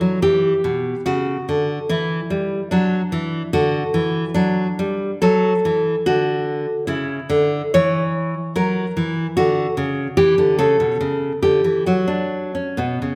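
A classical, baroque-style dance in 3/4 for solo nylon-string guitar, its bright, full-bodied tone from fresh strings sitting up front with audible finger squeak and a moderate recital-hall reverb, moves with a flowing, dance-like rubato through a short passage cut from a longer piece.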